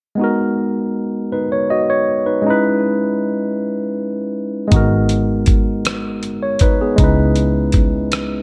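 A dark, lightly reverberant production with a digital ambience frames this sultry, late-night slow R&B excerpt in six-eight. A barky, lightly overdriven tine electric piano sits up front through a combo amp, alternating G#m7 and C#m9 alone from 0.2 seconds. At 4.7 seconds a round, punchy foam-muted electric bass and a gritty, compressed sampler-style soul drum kit with a thumpy kick, hi-hat and rim click enter together.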